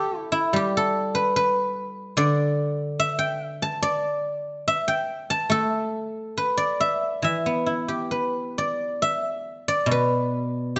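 A light reverb surrounds this short passage, and the sound is mellow with a softened top end. A solo guzheng, played with fingerpicks and placed up front, rings out with a silvery tone across a broad register in a freely paced, longing and contemplative traditional Chinese piece. Around 9.0 s the music moves into a new section, and the passage ends at 10.8 s, cut from a longer piece.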